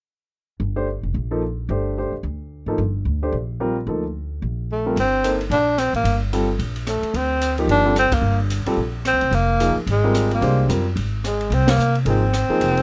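Woody pizzicato upright bass opens this searching, intense modal jazz swing fragment, joined at once by a natural-sounding baby grand piano, before a breathy, whispered tenor saxophone enters at 4.7 seconds with vibrato and scooped notes and an open drum kit with dark cymbals, a high-tuned snare and a boomy kick falls in behind it, the band hitting accents at 8.1 and 11.7 seconds in a dry, rough home-demo sound.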